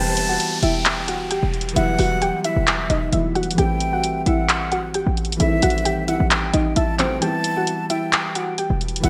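Eerie and menacing, this half-time trap excerpt is cut from a longer hip hop piece. A warbly, dusty pluck carries the melody with a lo-fi, detuned vintage tone, a sub octave, a filter sweep and a chorus sheen. A breathy concert flute with vibrato and a crisp attack adds a second line through a delay, while a dark, boxy grand piano with long sustain and subtle chorus plays the accompaniment. A punchy, tight 808-style bass sits up front, and a trap drum kit enters at 0.2 seconds with bright hi-hats, handclaps, 12-bit sampler grit and gated reverb. An electronic downlifter sweeps through the opening until 3.6 seconds, the harmony moves from Emadd9 to Am7 and back, and a break arrives at 7.2 seconds, all framed by light digital ambience and bright 1980s-style digital production.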